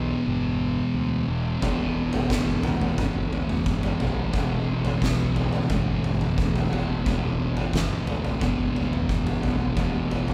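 The oversized, low-tuned drum kit dominates this brooding stoner and doom metal passage, entering at 1.6 seconds with a punchy kick, a fat snare and toms that sit up front in a gritty, saturated sound colored by a bright stone room that pumps around them. Beneath it, two thick fuzz guitars play a dark, distorted, picked riff between E2 and E3 from the start. A fuzz fingered electric bass growls below them, overdriven yet warm, reaching from E1 to D2. The guitars and bass stay in the background, riffing over a single E minor chord at a straight, heavy 88 BPM in 4/4. The sludgy recording, cut from a longer piece, captures a band playing live in one room with light reverb and runs to 10.3 seconds.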